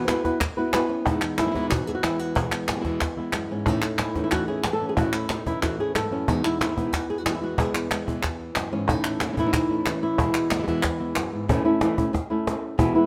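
A straight 4/4 pulse at 184 BPM drives this festive, proud flamenco in E major, set by a snappy cajon with snares in a live room and crisp, close palmas hand claps up front until they drop out at 11.3 seconds. A fingerpicked acoustic flamenco guitar carries the melody up front, ranging from E2 to B4, while a second guitar sits in the background with stabs from 1.1 to 11.5 seconds as the chords move between E and A. Light reverb lends a touch of space to this short passage cut from a longer piece.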